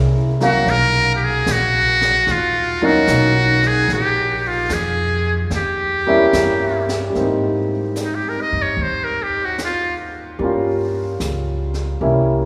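A tender, romantic jazz ballad fragment opens at 0.0 seconds with clear upright piano chords and a thumpy, woody pizzicato upright bass, all bathed in a deep cathedral-like reverb. At 0.4 seconds a metal-muted trumpet steps up front with a buzzy, thin, brilliant tone, soft attack and light vibrato, carrying the swung melody until 10.0 seconds. A gentle brushed drum kit with a high-tuned snare and hi-hat sits far back in the mix over lush jazz harmony.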